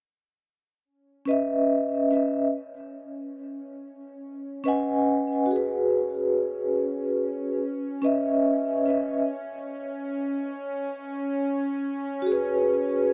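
A close-miked vibraphone played with soft mallets stands out up front, its mellow, ringing tone colored by tremolo and tape echo as it enters at 1.3 seconds over C# minor harmonies at a slow 71 BPM with a lightly swung trip hop feel. Beneath it, a tense, string-like bowed drone with slow attack, vibrato and a ring-modulated edge holds C#4 from 2.7 seconds, sitting low in the mix. A lush hall reverb gives this short, cinematic cut a dark, spacious atmosphere.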